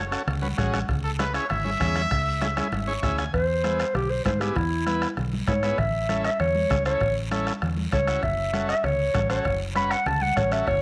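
A sunny, festive cumbia excerpt at 196 BPM opens with a bright, punchy trumpet solo with vibrato over F#m and C#m, followed by a drum fill and a buzzy combo organ fill that lead into a mellow, vintage-toned clarinet solo up front from 3.3 seconds, moving through E, A and F#m7. Beneath them, a warm fingered electric bass, soft-beaten bombo, raspy close guiro and thick-skinned congas set in the background keep the groove, while the organ supplies clean, lightly vibrato-tinged accompaniment. It is set in a moderate echo-chamber reverb with studio ambience.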